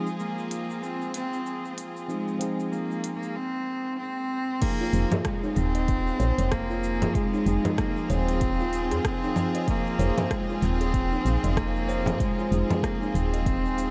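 Meditative and warm, this organic downtempo passage moves at 95 BPM in 4/4 with a gentle 16th-note swing, settled in F minor pentatonic over an Fm7 chord, and is cut from a longer piece. A rich, nasal cello carries the melody up front with light vibrato and tape echo, accompanied by a worn, slightly out-of-tune tine electric piano and an earthy chamber string section whose sustained chords pulse with sidechain pumping. An afro-pop drum kit of congas, crisp hi-hat, rim click, shaker and crash enters at 0.1 seconds. Around 4.6 seconds the groove deepens as a deep electronic kick arrives, followed by a hollow, airy kalimba playing arpeggios through tape echo, a round, dark FM bass that also pumps with the sidechain, and a very quiet acoustic frame drum. The whole mix is dreamy and soaked in a huge ambient reverb.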